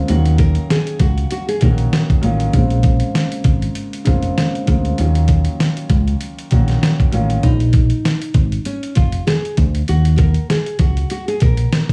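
A swung sixteenth-note groove at 98 BPM in 4/4 drives this gritty, dark boom-bap hip-hop excerpt, built on a compressed, sampler-style drum kit with a thumpy kick, fat snare and hi-hat sitting up front. A deep dub fingered electric bass, round and punchy, shares the foreground with its dark, direct-amped tone. An intimate upright piano with woody character, audible action noise and long sustain carries the accompaniment over Ebm7 and Bbm7 until it drops out at 7.5 seconds. A fingerpicked nylon-string guitar with a full-bodied classical depth and audible finger squeak plays the melody through analog delay, appearing briefly at the start and returning at 7.4 seconds as the harmony moves to Bb5 and Eb5. Vinyl crackle and a light studio reverb lend the whole clip a gritty patina.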